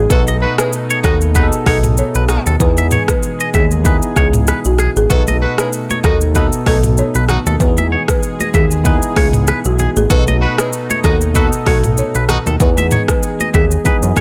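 A lightly swung sixteenth-note afrobeats groove in 4/4 comes from an up-front electronic drum kit with a deep kick, metallic hats, rim clicks, shaker and toms, joined by a thick, nasal, detuned analog bass, with very quiet, ringing congas entering at 5.1 s. Over a joyful, sunny alternation of B7 and Emaj7, a dry, woody marimba carries the melody with a delay echo, while a twangy, compressed clean electric guitar picks a riff and a punchy horn section with light vibrato adds a second line, both also touched by delay. Underneath, a clean tine electric piano provides accompaniment, and a very quiet, lush, warbling unison pad with chorus holds the harmony, all inside a digital ambience in this snippet cut from a longer piece.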